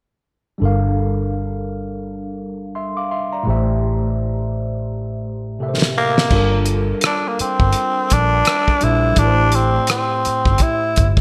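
This R&B and neo-soul excerpt has a smooth, late-night mood at 84 BPM with a swung 16th-note feel in G dorian, shifting between Gm7 and Am7. From 0.6 s, an overdriven tine electric piano with a phaser plays gritty chords up front over a round, foam-muted fingered electric bass. A cloth-damped, thuddy drum kit with a fat snare, dark cymbals and gated reverb enters at 5.8 s on a fill, and at 6.0 s a raspy, growling tenor saxophone takes the solo melody with vibrato and a subtone, all within a bright 1980s-style digital production and light small-room ambience.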